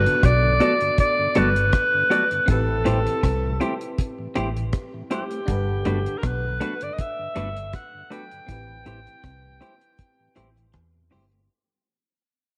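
A clear alto saxophone opens this sweet, romantic lovers rock reggae piece at once, carrying the melody with light vibrato, subtone, scooped notes and a tape echo, over a glassy FM electric piano with a bell-like attack and chorus sitting in the background, and a round, foam-muted fingered bass that lands dark and punchy. A dry, deep drum kit with a tight kick, rim click and hi-hat joins almost immediately, its rolled-off top kept up front with a slight swing on the sixteenths. A very quiet tonewheel organ adds a mellow, flute-like layer with key click and slow rotary movement, while a twangy, fingered electric guitar plays a low riff just beneath the surface. From 0.6 seconds a clean, compressed semi-hollow guitar adds picked, hollow-bodied stabs. The harmony sways gently between Gmaj9 and Am7, the whole band sits in a moderate echo-chamber reverb, and the passage fades out across its short length, cut from a longer piece.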